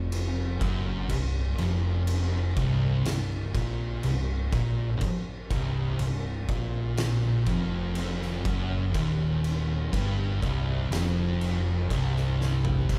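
A slow, straight 4/4 pulse at 61 BPM carries this hypnotic, brooding stoner and doom metal fragment in C minor, where two dark, picked fuzz guitars, one sitting in the background, play a low riff over a bright, overdriven fingered electric bass and an oversized low-tuned acoustic kit with a fat snare, punchy kick and shadowy cymbals pumping in a stone room, the band sounding live together in a large studio with moderate reverb as a drum fill at 12.4 seconds closes the section.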